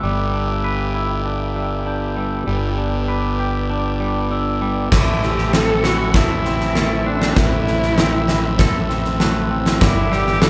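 Post-rock at 98 BPM in 4/4, this short excerpt from a longer piece feels euphoric and hopeful, moving from Em7/G to Am and back. From the start, a clean, twangy electric guitar plays fingered arpeggios while a glockenspiel struck with soft plastic mallets adds mellow, bell-like arpeggios above it. Beneath them, a fingered electric bass with overdriven fuzz sits up front, and a muted string section, con sordino and very quiet, holds dark, veiled chords with a soft attack. At 4.9 seconds a rich, bowed solo cello enters with a focused melody carrying vibrato, though it sounds distant, and a huge arena drum kit arrives alongside it with a punchy kick, fat snare and crash cymbal. The piece sits in a moderate concert-hall reverb, giving the sound a spacious, resonant setting.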